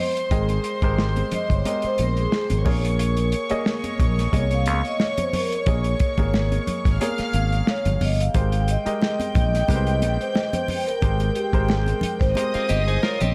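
Riding a lightly swung 16th-note groove in 4/4 at 90 BPM, this smooth, cinematic slice of lush 1970s-style soul is led by a mellow, ringing vibraphone solo played with soft mallets and slow motor vibrato, drifting over Abmaj9 and Bbm7 harmonies with floating sul tasto strings, a clear concert grand piano, a muffled, up-front soul drum kit with a tight kick, a growly, punchy fingered electric bass, and high-tuned congas tucked in the background, before a dark, picked electric guitar riff with analog chorus slips in at 12.5 seconds, all set in a small, lightly reverberant room with a dark, warm production.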